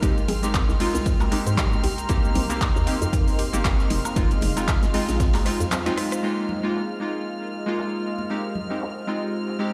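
Heard through a big sound system in a bare room with a large studio reverb, this moody, late-night deep house excerpt at 116 BPM swings gently in 4/4 over Abmaj7, Cm7 and Fm7. An overdriven, punchy electronic kick sits up front with an overdriven deep house kit of handclaps, filtered hats, rim click, shaker and woodblock, while a very quiet vintage kit and a hollow, bouncy FM bass with tube saturation drop out by 6.2 s after a drum fill and band accent, and bright congas carry on in the background until 8.7 s. Detuned, wave-folded analog keys stab up front with chorus and delay, alongside a smooth, dark sawtooth pad, a soft round pluck that stops at 6.1 s, a deep evolving ambient pad and an earthy chamber violin section holding a high F6.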